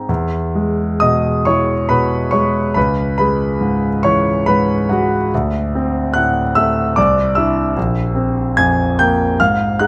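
Set in a slow, unhurried 3/4 at roughly 64-76 BPM, the rhythm breathes freely with rubato, giving this short impressionist classical fragment a drifting, dreamlike pulse. A solo concert grand piano carries everything from start to finish, ranging from deep bass notes down at A#1 up to shimmering tones near G#6. Its sound is clear and polished, with long sustain and the faint mechanical noise of the action audible, placing the instrument intimately up front. The harmony glows in E mixolydian, moving from Emaj7 through C#m7 and a D9 before settling onto Cadd9 and an A#sus2 near 7.8 seconds, lending the passage a luminous, unresolved quality. Close, detailed miking and a light touch of reverb keep the piano present while letting its resonance hang softly in the air, as this piece of a longer work closes at 9.9 seconds.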